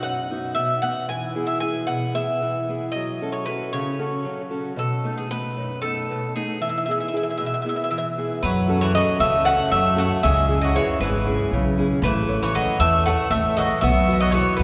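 A bright, metallic bouzouki melody with doubled strings opens over a boxy, fingerpicked steel-string guitar with audible finger squeak in this sunny, hopeful Greek folk piece in 7/8 and E major, which starts at 231 BPM and gradually speeds up throughout; a warm second bouzouki line and a woody, thumpy pizzicato upright bass join at 8.4 s, all bathed in the long, wet reverb of a cathedral-like hall.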